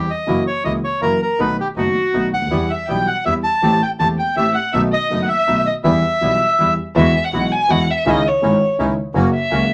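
Tango in 3/4 with a rubato feel, this passionate, sultry passage is cut from a longer piece. A reedy, airy bandoneon carries the melody up front until 6.7 seconds, while a second, close-miked bandoneon adds dry, full stabs lower down. A dark concert grand piano, mellow with deep bass and a short, vintage sustain, sits up front as accompaniment, and a clear, biting double bass, bowed with light vibrato, keeps an earthy line in the background. A warm violin enters at 1.8 seconds as a second line, singing with vibrato and portamento, then takes an expressive solo from 7.0 seconds with a smooth top as the harmony moves through Eadd9 and C#madd9 before arriving on an F# chord. Moderate studio reverb gives the small ensemble a sense of shared space.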